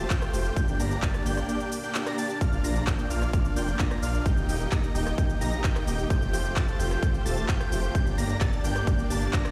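A straight 4/4 pulse at 130 BPM, led by a punchy, up-front electronic kick and a tape-toned big-room kit of handclaps, crisp hi-hats, rim clicks and shaker, carries this emotional, powerful festival progressive house excerpt in G minor. Underneath, a thick, menacing detuned saw bass pumps against the kick, while huge, bright supersaw chords with digital delay move through Fadd9, Gm, Bb and Eb. A plucky, catchy unison lead with a filter sweep, moving notch and vibrato spins high arpeggios, and a lush, slow-attack unison pad with chorus and phaser sits in the background, all of it played through a big sound system in a bare room and washed in large studio reverb.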